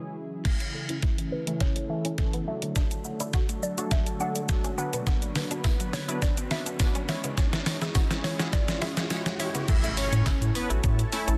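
A punchy, detuned polysynth comp and a lush, thick unison pad open this summery, upbeat dance-pop excerpt in A major at 104 BPM. A build-up follows with a thumpy, fat-snared 8-bit drum machine up front, a background riser from 2.7 seconds, a clean direct-recorded electric guitar riff, a very quiet jingly tambourine, and woody, mallet-like FM plucks carrying both arpeggios and a mellow phased melody under a filter sweep. At 9.7 seconds the drop hits with an impact, along with a smooth soft supersaw melody and a deep, round analog bass, both pumped by sidechain, all in a dry, dense, heavily limited mix.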